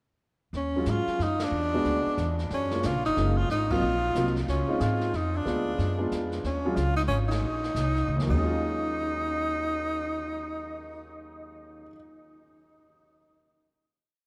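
Upright bass and brushed drums open this late-night, smoky small-group jazz waltz at 0.5 s. The piece is in Eb minor at 183 BPM, with a swung 3/4 feel. The pizzicato bass walks up front with a woody, growly tone on steel strings, while the distant, roomy brush kit sweeps the snare under dark cymbals and a boomy kick. A clear tenor saxophone takes the solo close-miked and up front, shaping a motif-based melody in period phrases with vibrato and scooped notes, and a grand piano comps in syncopation with rootless voicings, intimate and natural with its action noise audible. The harmony moves from Ebm11 through E9, Gbmaj7, Ab13, Dbmaj9 and Ddim7 before returning to Ebm11, with band accents punctuating the form and a drum fill leading into a final hit as the drums stop at 8.4 s. The piano rings on until 12.0 s, and the whole group sits in a vast, echoing cathedral reverb.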